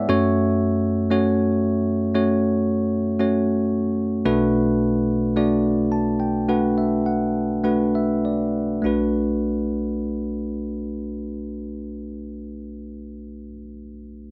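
Pop in B minor at a slow 49-59 BPM, heartbroken and melancholic, carried by a bright, bell-like tine electric piano set up front in light reverb that moves from F#m to Bm7, slows down through the opening 8.8 seconds, and plays a fill from 5.4 seconds.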